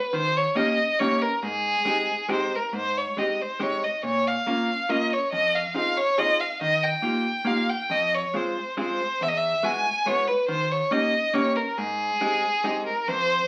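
In a straight three-beat musette waltz, a clear, focused bowed violin with vibrato sings the nostalgic, charming melody up front over a dark, clean, compressed hollow-body electric archtop guitar picking the accompaniment through a wet studio reverb, the whole excerpt heard through the crackle of a very old 78 rpm record.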